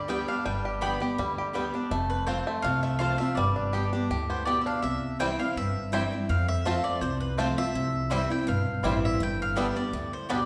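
Bathed in the wet reverb of a church or concert hall, this driving, joyful bluegrass excerpt at 165 BPM in G mixolydian puts a bright, double-strung mandolin melody up front over a full-bodied dreadnought guitar, twangy fingerpicked banjo arpeggios, a thumpy gut-string upright bass and a round second mandolin playing stabs in the background, with chords shifting from G and F to C around 4.8 seconds.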